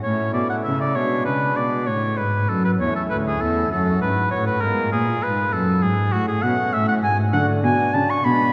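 Flowing in a lilting 6/8 at 66 dotted-quarter beats per minute with gentle rubato, this dance-like baroque-style sonata movement, cut from a longer piece, sets a warm, lightly vibrato oboe up front as the soloist over a nasal cornet stop on pipe organ with tremulant and a dark, reedy gut-string cello bowing the bass, all bathed in the long, wet reverb of a church, moving through A major and F-sharp minor harmonies before settling on D at 7.3 seconds, in a tuning slightly below modern pitch at A4 = 437 Hz.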